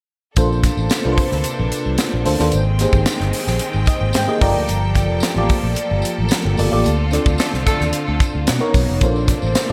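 A straight 4/4 groove at 111 BPM drives this polished 1980s jazz-funk pop excerpt in Bb major, with a glossy, urban mood. The tight funk drum kit sits up front with a punchy kick, a high-tuned snare and hi-hat under gated reverb, while a jingly, band-limited tambourine stays in the background. A round, amped fretless electric bass with lush chorus anchors the low end, and an FM electric piano layered with a soft pad adds dreamy, mellow chords with fast attack, stepping forward for a fill from 3.6 to 4.7 seconds. A clear studio string section holds smooth, bowed chords beneath, moving through Bbmaj9, Abmaj7, Gm9 and Dm7 before touching Bmaj9 and returning to Bbmaj9. The band hits an accent from 6.9 to 9.0 seconds, and a warm horn section with light vibrato and octave doubling slips in briefly at 7.4 seconds through a digital delay, all framed by light small-room ambience and bright digital production.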